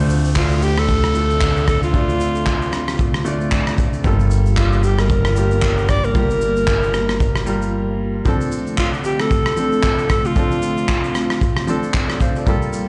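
Late-night and soulful, this amapiano excerpt at 114 BPM with a swung 16th-note feel sets a breathy, intimate alto saxophone melody with delay over clear grand piano accompaniment, mellow chorused string-machine cellos pumping in the background, a fat detuned sawtooth bass that drops out at 8.2 seconds, a tight, mid-forward soul kit of kick, handclaps, rim click and shaker, and a faint electronic downlifter in the opening 4 seconds, all moving from Dm7 to Gm9 through a short break near 7.7 seconds and heard in a bare room through a big sound system with large studio reverb and a dull top end.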